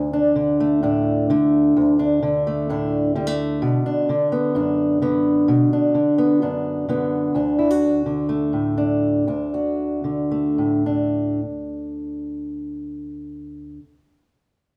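Recorded live in a large studio with a moderate reverb, this short folk excerpt in D major at 129 BPM features a solo fingerpicked old ladder-braced acoustic guitar, up front with a dark, woody, boxy tone from old strings, moving from D5 to Bm to D with an anthemic, uplifting mood and slowing down between 7.3 and 11.4 seconds.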